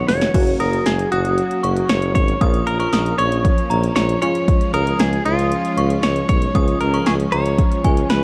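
Nocturnal and cool, this synth-pop excerpt moves at 116 BPM in a straight 4/4, opening with a brief drum fill from a punchy, overdriven analog drum machine before settling over Gb, Bbm and Db chords. Up front, a bright, twangy clean electric guitar carries the melody with vibrato and slapback echo, while a tuba plays the bass and a very quiet, funky polysynth comp adds mellow sawtooth plucks. A shimmering vintage string machine of violins holds sustained chords in the background with ensemble chorus, and from 0.6 seconds an inharmonic FM synth chime rings out a second line high above, all set in a dark production with light digital reverb.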